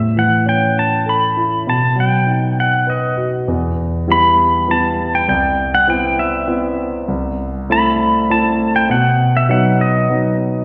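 An acoustic folk-pop ballad in E minor at 100 BPM in 3/4, this melancholic, intimate fragment of a longer piece is tuned slightly sharp to A4 = 445 Hz. Up front, a clean electric pedal steel guitar carries the melody high in its range with fingerpicks, slide and volume swells, its tone compressed and warm. A concert grand piano with deep bass accompanies through chords moving from A and B into Em, Cmaj7, Am/C and B as a new section opens at 3.5 seconds, all set in the lush reverb of a church or concert hall.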